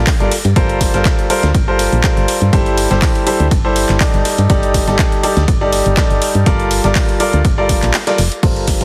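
A lightly swung sixteenth-note groove in 4/4 drives this energetic, bittersweet piano house excerpt, cut from a longer piece and set at full drop intensity from the start. A punchy, tape-warm electronic kick anchors the beat, joined by a layered house kit of crash cymbal, handclaps and hats, while a gritty, overdriven breakbeat-style sampler kit of hi-hat, ride and a medium-tuned snare sits in the background with its cymbals and hats pumping to the sidechain. A round, dark FM bass with a fast attack and decaying notes pulses underneath, and a clear grand piano up front carries the riff through low-pass filtering, delay and sidechain pumping. The chords move from Bbmaj7/G through Gm11, Am7/G and Ebmaj7#11/G before returning to Bbmaj7/G at 6.5 seconds. The kick drops out between 7.9 and 8.4 seconds, and the whole mix has a light reverb and a heavily compressed, radio-like sheen.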